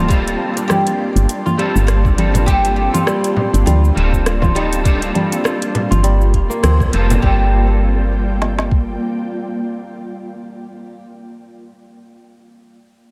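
A round, dark FM bass sits up front in this short, mystical slice of organic downtempo, its fast-attack notes decaying under a sidechain pump. A soft kick and a woody snare from a tape-warm electronic kit carry the swung 4/4 groove until 8.9 seconds. Alongside them from the start plays an overdriven afro-pop kit of congas, metallic hats, rim click and shaker, and from 2.3 seconds a small, bright frame drum enters, played very quietly by hand. A mellow, ringing kora picks arpeggios through a delay, while a slightly broken-up, twangy electric guitar adds accompaniment with chorus, pumping and delay. In the background, a plectrum-plucked fretless oud with doubled strings carries a deep, meditative melody, and an ethereal, airy pad holds detuned, wave-folded chords with a slow attack and long release. The band accents together at 6.6 seconds, and the dreamy mix is soaked in a cathedral-sized reverb.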